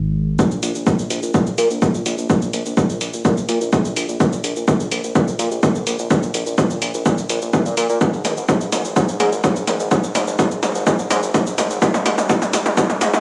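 A punchy, layered electronic kick drum sits up front in this driving, cinematic melodic techno cut at 126 BPM in a straight 4/4. It plays alongside a techno drum kit of metallic hats, shaker and toms, both re-recorded in a small room and given a cassette-tape grit. A fat, detuned sawtooth bass with a fast attack and decaying notes pumps against the sidechain from 0.0 s, ranging from Ab1 to Bb2, while the whole passage from 0.4 s is one long build-up and drum fill under light studio reverb with a home-cassette character.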